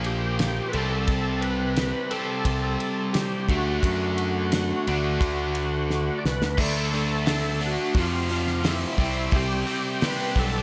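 A big arena sound with moderate hall reverb frames this driving, confident classic rock excerpt at 87 BPM in 4/4, where a cranked, double-tracked stack guitar plays an up-front, bright overdriven riff with spring reverb over a growling picked bass and a damped 70s kit with a fat snare and tight kick, while a thick, gritty tonewheel organ carries the melody through chorus vibrato, slow rotary speaker and slapback echo, and a drum fill at 5.9-6.6 s leads into a new section at 6.6 s.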